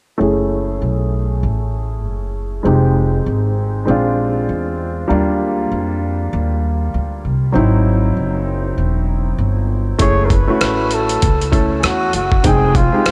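This cool, mellow jazz-hop excerpt moves at 98 BPM in 4/4 with a swung sixteenth-note feel. From the start, a warm, intimate upright piano carries the chords under a low-pass filter and a filter sweep that runs until 10.0 seconds, its action noise audible, while a woody, thumpy pizzicato upright bass holds the low end up front. The harmony drifts through jazzy extended chords, opening on F#m7 and passing through Fm9, A#9, D#maj9 and G#7b13 before circling back. At 10.0 seconds a dusty, sampler-style drum kit enters with hi-hat, rim click and a thumpy kick, compressed and gritty with overdrive. At the same moment a breathy, close-miked flugelhorn takes the solo melody with scooped notes and a delay. A huge ambient reverb soaks the whole mix in a dreamy haze.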